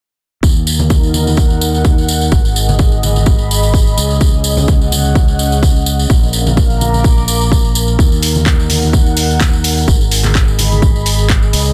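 Bittersweet and energetic, this piano house cut at 127 BPM in Eb minor swings its 16ths lightly over a dry, dense, heavily limited mix: a punchy, tape-warm electronic kick sits up front, a bright, direct fingered electric bass is sidechain-pumped and carries a filter sweep, soft-handed tambourine and congas add acoustic shimmer, and an airy, breathy, detuned pad with chorus and sidechain pumping sustains over chords moving from Ebm through Abm7, Db7sus4 and Bb7, before a low-pass-filtered house kit of handclaps and hi-hat joins at 8.2 s.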